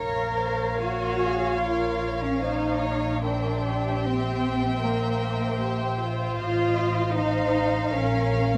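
Classical, a slow romantic movement for string orchestra in Bb minor, this solemn, elegiac fragment moves at 75 BPM in 4/4 with a rubato feel, tuned to A4 = 436 Hz and cut from a longer piece. Throughout its 8.6 seconds, a focused first violin section carries the melody with vibrato, while second violins play sul tasto with a soft, intimate touch, a dark viola section adds expressive accompaniment, and up-front cellos with portamento join a smooth, even double bass section on the bass. Close, detailed microphones and light reverb frame the harmony as it passes from Bbm through C7/Bb and F7/A before returning to Bbm at 7.9 seconds.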